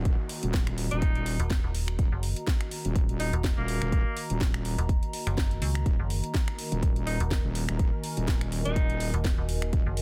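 A heavy, saturated wobble bass with chorus and sidechain pumping opens this aggressive, gritty bass house excerpt in Eb minor at 124 BPM with a swung 16th feel, alongside a faint electronic downlifter, a bright, detuned sweeping resonant pad in the background and a dark, lo-fi warbling tape-like pad with its own reverb, while a punchy layered kick up front and a house kit of finger snaps, metallic hats and a cracking, soft-clipped snare drive the groove, a forceful, vintage-toned alto saxophone with light vibrato and tape echo takes the solo melody from 0.9 seconds, and a metallic, decaying FM bass with tube saturation joins at 1.4 seconds over a dense, heavily limited digital mix.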